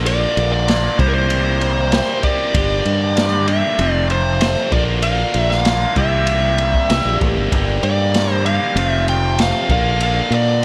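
An echo-heavy mix with light reverb and a small-room ambience frames this trippy, hypnotic psychedelic rock excerpt at 96 BPM, where a bright, double-tracked overdriven electric guitar plays a phaser-swept riff over a growly, punchy fingered bass and a gritty, saturated breakbeat kit with dark cymbals and a tight kick, while a fuzz lead guitar carries the melody through distortion and tape echo above chords moving from Bb through C7, Gm and F, until a buzzy, very quiet vintage combo organ enters with sustained chords at 7.5 seconds.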